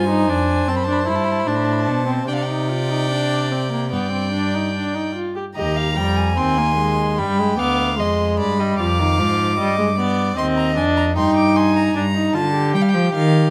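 A classical, baroque-style fugue for string quartet in an elegant, joyful mood, cut from a longer piece, with one violin singing the high melody and a second violin with light vibrato carrying an inner line until 12.0 seconds, over an up-front viola with a smooth top and a rich, close cello bass, all bowed with gut-string period tone and a reedy edge, captured by close, detailed microphones in light reverb.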